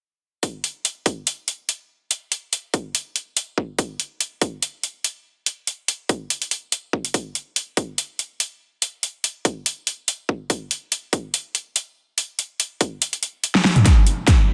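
Heavy and chaotic, this heavy wobble dubstep excerpt moves at 143 BPM in a swung half-time 4/4, driven by up-front, layered electronic drums: a punchy kick, plus a kit of huge snare, metallic hi-hats and toms, each part high-pass filtered, all set in light reverb under a dense, heavily limited modern master, with the kick dropping out at 13.0 seconds and a drum fill arriving at 13.5 seconds.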